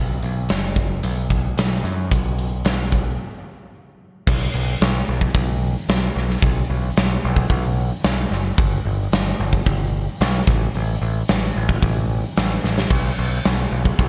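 Anthemic and swaggering, this hard rock passage at 111 BPM in a straight 4/4 is cut from a longer piece. A growling picked electric bass opens at 0.0 s, bright and overdriven, sitting up front as it holds the low end between F#1 and F#2. A big acoustic rock drum kit arrives at 0.2 s with crash, splash, hi-hat, a punchy kick and a medium-tuned snare, its dark, smooth tone spread through a big room and gated reverb. A break from 3.2 to 4.3 s marks the turn into a new section, and a drum fill at 12.6 s pushes toward the close. The sound overall carries a bright 1980s-style digital production with light reverb, keeping both parts up front.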